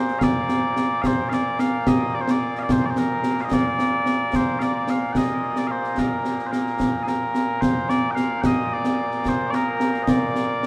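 In a straight 6/8 lilt at 73 beats per minute, this stirring, proud piece of Scottish traditional pipe music in Bb major is cut from a longer performance. Mellow, sweet small bagpipes carry a continuous solo melody up front from the very start, joined at 0.1 s by concert snare and bass drum with bright cymbals and an acoustic, live-room presence. A huge, wet ambient reverb places the listener further back in the hall, and the opening strain begins again at 7.6 s.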